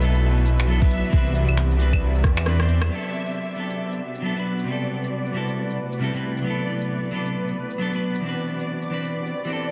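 Swung sixteenths at 135 BPM drive this melancholic, nocturnal future garage piece in B phrygian. A tape-warm electronic kit of cabasa, shaker, finger snaps, claves and rim click, with a softly clipped snare, is joined briefly by a soft kick, and a drum fill leads to a band accent at 2.8 seconds. Up front, a dark, picked clean electric guitar carries 12-bit sampler grit, dub echo and sidechain pumping above a blurred granular cloud pad, while a menacing, detuned saw bass with tube saturation swells underneath until 2.9 seconds and a reversed, dreamy backwards texture hovers high and bright, all moving through Bm7, Cmaj9 and Am7/C in a light digital ambience with vinyl crackle over a dense, heavily limited master.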